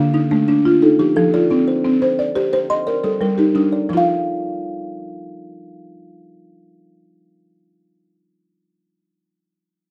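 A buzzing marimba played with medium mallets and a kalimba start together, both spinning arpeggios up front in a southern African traditional style: an mbira-like interlocking cycle in 12/8 at 117 BPM with a straight feel, tuned to A4 = 437 Hz. The hardwood bars sound woody, dry and airy, while the fingertip-plucked kalimba rings mellow and soft from its hollow box, cycling through Dm, F, Cm and Gm before the chords fall away at 3.9 s into a second section. The mood is warm and hypnotic, with light reverb and studio ambience on a rough home-demo mix, cut from a longer piece.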